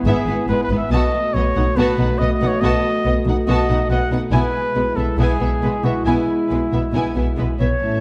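Moving in a straight 4/4 at 140 BPM, this adventurous, soaring cinematic excerpt sets a lush, vibrato-rich violin melody over a second violin line, smooth violas, expressive cellos and up-front double basses, with a mellow, distant French horn section holding sustained chords, a clear solo trumpet punching out stabs until 7.6 s, and a dark clarinet slipping in at the very end, all bathed in the moderate reverb of a scoring stage as the harmony moves from E/G# to B7 and settles on E/B.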